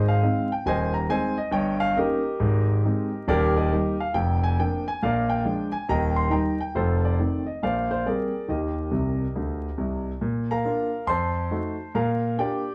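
A swung 4/4 at 138 BPM drives this exuberant, playful stride-jazz excerpt in Eb major, where a clear, natural-sounding solo concert grand with deep bass ranges from Eb1 to C6 in a wet small room heard from further back with vinyl crackle, adding a fill from 8.9 to 10.2 seconds before moving into a new section at 10.2 seconds.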